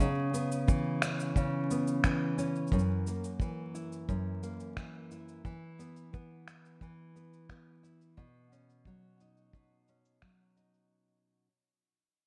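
Intimate and wistful, this folktronica fragment in straight 4/4 is cut from a longer piece and fades out across its full length. A fingerpicked nylon-string guitar sits up front, playing delayed arpeggios with a deep classical tone, fresh strings and audible finger squeak as it moves through C#m7, F#7, E5 and Badd9. Electronic cabasa and finger snaps add a produced, overdriven texture, low-pass filtered and re-recorded in a large room. A dry, dark acoustic kick with a tight, rolled-off top enters at 0.7 s and stays close in the mix. Light reverb, small room ambience and a bed of vinyl crackle give the recording its hushed, lived-in character.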